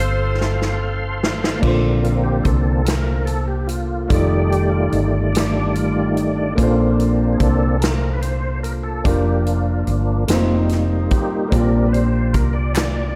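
With light reverb around the room, this uplifting, reverent slow gospel passage in 6/8, cut from a longer piece, opens with a brief, edgy, tight saxophone section melody and a big-band drum fill before a clear tonewheel organ solo takes over at 1.6 s, its fast rotary speaker, chorus vibrato and key click sitting up front over a boxy concert grand piano with long sustain, a dark, round hollow-body electric bass, natural big-room drums with a punchy kick and a medium-tuned snare, and a hollow handclap in the background at 12.8 s.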